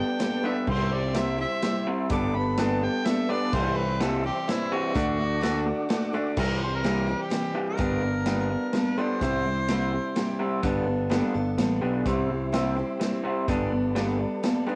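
A mellow harmonica with scooped notes and light vibrato leads this folk and heartland rock piece in 3/4 from the start, soloing over the changes and playing until 10.4 seconds. Up front, an electric guitar through a small old amp drives a slightly broken-up, compressed riff, backed by a picked steel-string acoustic guitar in the background, a punchy picked electric bass, and a vintage kit with dark cymbals and a tight kick. A very quiet, flute-like tonewheel organ with rotary speaker holds soft chords, dropping out at 6.4 seconds and returning at 12.1, while light reverb and the home cassette recording lend the whole piece an open-road feel.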